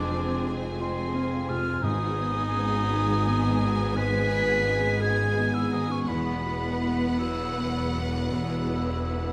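Bittersweet and moving, this cinematic orchestral film cue sways in an uneven, rubato 6/8 as a lush, vibrato-rich studio violin section carries the melody over a gentler symphonic violin section, a close clarinet and an airy, distant silver flute high above. Beneath them, a felt-muted upright piano with audible action noise, a very quiet viola section, a dark French horn section holding chords, ringing fingerpicked harp arpeggios, and bowed cello and double bass sections fill out the harmony, while round, soft-mallet timpani sound only from 1.8 to 2.8 seconds. A moderate scoring-stage reverb gives the ensemble space in this passage cut from a longer piece.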